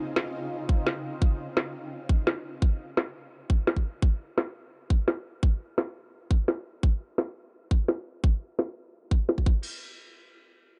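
The sound is dry and dark, with little reverb and the top end rolled off above 10.3 kHz. This short piece of liquid drum and bass, cut from a longer track, moves at 171 BPM in a straight 4/4 and feels lush and warm. A shimmering, ethereal ambient pad opens on a Dbmaj9 chord in Db major, its slow-attack triangle tone thickened by unison voices, an octave-up shimmer, granular texture, chorus, phaser and sidechain pumping, though it sounds only until 1.2 s. The drum kit arrives at 0.2 s, sitting up front with a woody snare and crash cymbal, its hats, snare, cymbals and room all softened by low-pass filtering. A filter sweep runs across the drums until 9.6 s. A tight, layered electronic kick joins at 0.7 s, and kick and kit play on together until 9.5 s, after which a brief closing passage follows.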